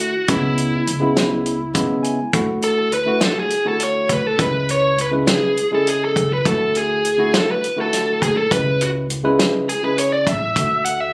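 Bright and intricate, this short cut from a longer progressive instrumental piece moves in an uneven 7/8 with a straight feel. A barky, clean tine electric piano played through a combo amp sits up front alongside a biting, overdriven lead guitar, whose picked line carries the melody from the start. The piano adds a fill from 1.5 to 2.3 seconds, and at 2.3 seconds the guitar launches into a solo that runs to the end. Beneath them, a woody, thumpy upright bass with gut strings is plucked low, and a dry, warm, mid-forward soul drum kit with a tight kick, a medium-tuned snare and a rolled-off top sits up front, playing hi-hat, kick and snare. The harmony alternates between C#m7 and Dadd9, and the whole piece has the close, compressed sound of a phone recording in a club with little reverb.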